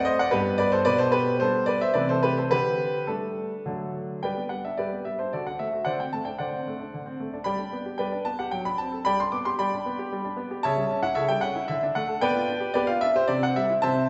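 Rubato triple time at 112 BPM carries this playful, graceful 14-second extract from a longer classical-period sonatina in G major, where a solo concert grand, clear and up front with an open tone and deep bass between G2 and D6, moves through changes like G, Dsus4, D7 and A7/C# before landing on C, all within a reverberant recital hall heard from further back, its top end rolled off above 7.9 kHz.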